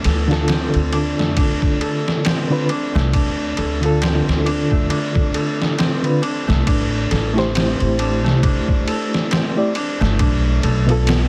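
A ringing Celtic harp plays tape-echoed arpeggios over woody, gut-strung pizzicato upright bass and a muffled, pitched-down, overdriven sampler-style trip hop kit with a thumpy kick, ride and snare up front, joined at 0.3 seconds by a reedy, lightly overdriven electric piano with tremolo, in a smoky, dark 68 BPM swung groove in D dorian moving from Dm to Am7 at 6.7 seconds, all heard through a heavily compressed radio sound with light reverb and a faint mains hum.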